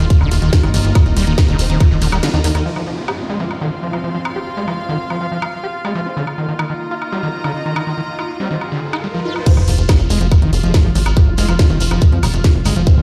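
Driving and intense, this psychedelic trance passage at 141 BPM is led by a squelchy, bright, distorted acid riff with chorus, delay and sidechain pumping, over a tight, up-front electronic kick, a punchy, funky plucky analog bass, a garage drum kit with a cracking snare, and a grainy, distant shekere, while a mellow, morphing wavetable pad and a reedy, gut-string chamber string section sustain beneath and a very quiet formant-sweep wobble bass adds a second line; after a brief break, the pad's filter sweeps and a downlifter, riser and sub drop fill the middle from 2.7 s, with the riser building from 6.1 s until the kick and shekere return with an impact at 9.5 s and the bass follows just after, all set in a large studio reverb.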